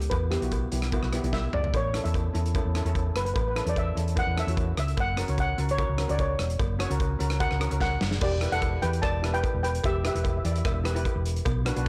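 Driving and intense, this calypso excerpt runs at 148 BPM in a straight 4/4, with the chords moving from Em to A, then F#, and back to Em at 8.2 seconds. A dark, smooth double seconds steel pan struck with medium rubber sticks carries the melody until 10.8 seconds, soloing through the first 8.2 seconds, while a bright cello pan played with hard rubber sticks supplies shimmering accompaniment underneath. A round, amped hollow-body short-scale fingered electric bass sits up front, giving the low end a dark, electric weight. The modern studio drum kit has a punchy kick, a medium-tuned snare with soft clipping, and a distant, roomy small-room sound, with fills at 1.3 and 7.8 seconds. A metallic cowbell stays in the background from 0.1 seconds, and the whole recording is blown-out and overdriven, with light reverb.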